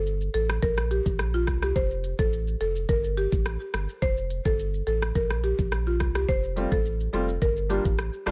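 Sunny and summery, this dancehall excerpt pairs a buzzing, woody marimba melody touched with delay against a thick, saturated sub bass and an electronic island pop drum kit with knocking kick, smooth hats, rim click and shaker, before a clear grand piano joins as accompaniment at 6.6 seconds, all with little reverb.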